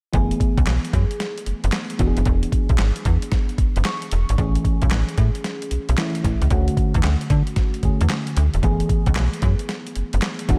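A light, digital-sounding reverb gives this short cut from a longer R&B track a polished sheen, with the bass and drums sitting up front. It is new jack swing at 113 BPM in F# minor, slick and confident, with a 16th-note swing that keeps the groove strutting. A dusty, sampler-style kit supplies a thumpy kick, a medium-tuned snare, handclaps and hi-hat, all compressed and gritty. Beneath it, a slap-like FM bass snaps out notes with a metallic, fast attack that then decays. A mellow FM electric piano adds soft, round, dark chords coloured by chorus, phaser and slapback echo, moving from F#m11 through E7, Amaj7 and Dmaj7 before returning to F#m11. The piano adds a brief fill from 3.6 to 4.4 seconds.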